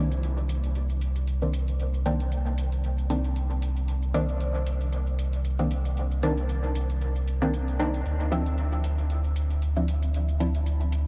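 Dub techno at 115 BPM with a swung, meditative and nocturnal feel, this fragment of a longer piece pairs muted, detuned sawtooth chord stabs, treated with chorus, phaser and dub echo, against a round, sine-like sub bass and overdriven metallic electronic hi-hats, moving from Cm9 to Dm9 at 8.1 seconds inside a dreamy mix soaked in a huge ambient reverb and touched by lossy compression artefacts.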